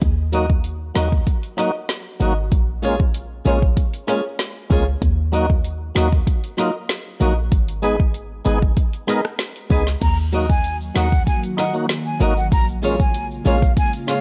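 Dancehall with a hypnotic, bouncy mood, cut from a longer piece and moving in a straight four-beat groove over a minor-key chord cycle. An electronic, produced afro-pop drum kit sits up front with a deep kick, woody snare, metallic hi-hats, rim clicks and crash cymbal, while a punchy, tight 808-style bass with a fast attack and decaying tail holds the low end. A lightly overdriven tonewheel organ with chorus vibrato fills the middle with warm, full chords, and a bright, fingerpicked flamenco guitar with fresh strings plays arpeggios above it. At 10.0 seconds a breathy, mellow silver concert flute enters with a tongued, slightly unsteady melody carrying vibrato and delay, joined by a soft-handed, saturated tube shaker. From 10.7 seconds an ethereal, airy pad with a slow attack, detuned unison voices, ensemble chorus and its own reverb breathes underneath with sidechain pumping, all set in a digital ambience.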